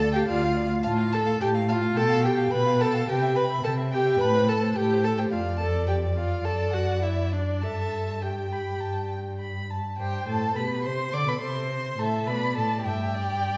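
Heard from further back in a wet recital hall, this lively, cheerful cut from a quick classical-period string quartet movement in C major moves at 106 BPM with a rubato feel, as a dark, woody, distant violin carries the melody over a second violin line shaped with soft attacks and portamento, a rich, focused viola accompaniment, and a warm, expressive cello bass sitting up front, all four players bowing with vibrato.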